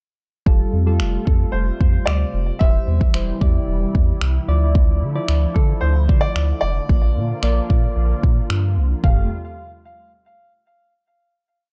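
A short, euphoric and carefree dance-pop piece opens at 0.5 s with a deep house drum kit of finger snaps, toms and a deep, up-front kick playing a syncopated pop beat, alongside a round analog bass moving in octaves with slides, soft electric-piano-like synth keys in syncopated chords, and a lush, detuned unison pad, the keys and pad both treated with chorus and phaser and all three pumping with sidechain. At 1.3 s a warm baby grand piano enters with a natural, motif-based melody of call phrases carried on delay. The dark, warm production stays dry, and the piece settles onto a final chord at 9.0 s.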